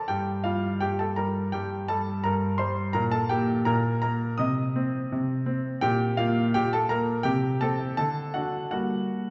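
Heard from further back in a reverberant recital hall, this brief recording carries a wet 1.8-second reverb tail, and its top end stops at 7.8 kHz. It is a fragment of a classical-period piano sonatina in G minor, cut from a longer piece. The mood is serious and dramatic, moving at 84 BPM in a straight 4/4, with the tuning set slightly high at A4 = 441 Hz. A single grand piano plays solo for the full 9.3 seconds, sitting up front with a clear, present tone and short sustain across a span from G2 to Eb6. The harmony moves from G minor through Gm/Bb to C minor, returns to Gm/Bb, then passes through Am7/C and D before settling back on G minor at 8.7 seconds.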